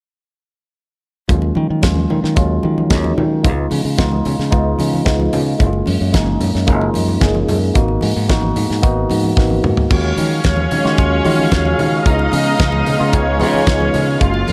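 A straight 4/4 disco groove at 112 BPM in Eb minor sets a sultry, glamorous mood. From 1.3 seconds, a dry, damped 70s drum kit with a fat snare and tight kick sits up front beside a growly fingered electric bass and background congas struck with hard hands, while a worn, slightly out-of-tune tine electric piano run through a phaser moves through Ebm11, Db7, Gbmaj9 and Abm7. After a drum fill at 9.4 seconds, two studio string sections join at 9.9 seconds in a small-room ambience: a reedy, gut-toned section with light vibrato carries a second line, and a darker, woody section with a smooth top holds lush sustained chords.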